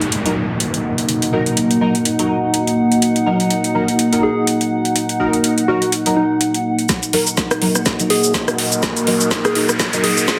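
An up-front, overdriven garage drum kit with a woody snare, metallic hats, rim click and shaker drives this bouncy, swaggering bass house excerpt, swung on the sixteenths. Beneath it, a deep, moody analog pad holds sustained chords while a warbly, nostalgic lo-fi tape-like pad adds texture, both pumping with sidechain, and a nasal, band-passed sawtooth chord stab with phaser and tape echo plucks through. A downlifter opens the cut, and from 4.2 s a round, keys-like FM lead with vibrato and chorus carries the melody. At 6.9 s a knocking electronic kick joins a drum fill and a filter sweep on the stab, building into a riser from 8.0 s, all under a dense, heavily limited modern master with moderate digital room reverb.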